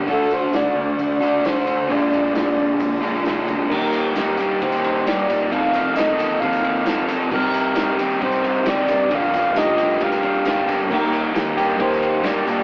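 A straight, steady 4/4 pulse from a loose indie drum kit with a punchy kick and dark cymbals sits in the background of this hazy, brooding shoegaze and dream pop fragment, cut from a longer piece, with a jingly tambourine and a round fuzz bass tucked behind. An up-front crunchy overdriven guitar riff drives the track over a very quiet, shimmering twelve-string acoustic playing woody arpeggios, while a slightly broken-up lo-fi electric guitar through a small old amp appears only until 3.7 seconds and again from 10.9 seconds. A reedy FM lead with a soft attack carries the sustained melody through chorus and tremolo, all inside a rough rehearsal-room recording with an AM radio character and wet reverb, moving through chords such as Ebmaj7, F7sus4 and Cm7.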